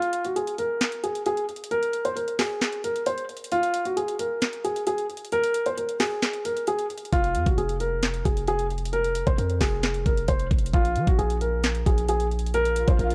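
A dark, intimate baby grand piano with audible action noise and short sustain carries a melancholic, menacing melody through a low-pass filter and tape echo in this half-time trap hip hop excerpt, driven throughout by an up-front electronic kit of knocking kick, sharp snare, handclaps and metallic hi-hats; a punchy, heavy 808-style sine bass with a noise layer arrives on an Fm chord at 7.1 s and a brief electronic swell lands at 12.8 s, the cut captured as a dry, gritty hardware recording with digital ambience.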